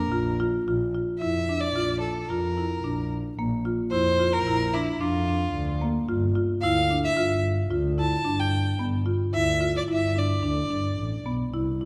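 A moderate concert-hall reverb of about 1.9 s surrounds this short chamber excerpt, a restless, playful contemporary instrumental in 5/4 at 110 BPM that moves from Bb to G5 at 6.1 s. Up front, a clear, smooth, even bowed violin carries the melody with vibrato, while a dark bowed double bass, also with vibrato, holds the bass line. A woody rosewood marimba played with medium mallets supplies arpeggios until 11.9 s.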